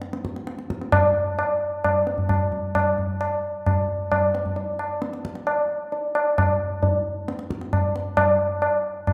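Longing and meditative, this brief cut from a longer Indian classical piece moves at 132 BPM in a straight 4/4, carried entirely by an acoustic tabla that sits up front with a low-tuned, ringing voice, set in the lingering reverb of a recital hall.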